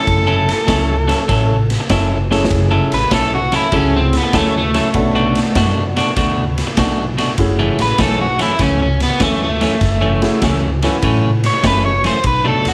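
A crunchy, overdriven electric guitar carries the melody and takes a solo from 2.5 seconds in this brooding, soulful F# minor electric blues shuffle at 98 BPM with a swung feel, over a slightly broken-up, compressed riff guitar, a woody pizzicato upright bass, a gritty, saturated garage drum kit in a bright stone room with a fill at 2.2 seconds, and an intimate, clear upright piano with audible action noise sitting in the background until 11.6 seconds, set in light small-room reverb and moving between F#m7 and Bm7 in this excerpt.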